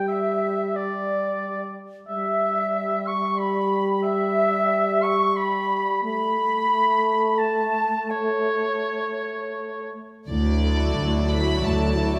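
Cinematic, emotional film score for orchestra, moving and tender, unfolding in a rubato three-four lifted from a longer piece. Airy flutes and a distant, roomy solo oboe share a second line over mellow French horns holding sustained chords from the start. At 10.3 seconds the strings arrive on a Dadd9 chord, with a floating sul tasto violin melody and intimate cellos with basses grounding the low end, joined moments later by a smooth-topped second violin line and woody viola accompaniment, all bathed in a wet scoring-stage reverb.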